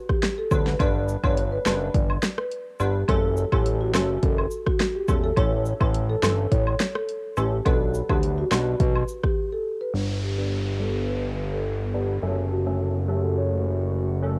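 Dancehall with a tough, hypnotic mood, cut from a longer piece and recorded at home on cassette, where a woody marimba melody, crisp filtered wavetable chord stabs, a nasal, saturated analog bass, an acoustic cabasa and woodblock, and a layered deep house drum kit with a punchy kick drive the groove until the drums break at 9.4 s, after which a dark, glassy FM pad with chorus and sidechain pumping enters under a filter sweep from 9.9 s alongside a faint electronic downlifter.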